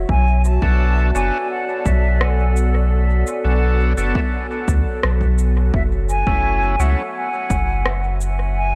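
A straight 4/4 pulse at 85 BPM from a punchy, overdriven electronic kick and a tape-toned shaker and rim click with dub echo sets a meditative, deep ambient dub mood in B dorian, moving from Bm7 to F#m7 at 5.7 s in this short cut from a longer piece. A round, up-front sine sub bass sits under a warbling, detuned lo-fi pad with chorus and slow-attack sustained chords. A distant, pure concert flute melody with vibrato and dub echo floats above gritty tonewheel organ stabs that carry a slow rotary speaker, echo and a filter sweep, all in a light reverb.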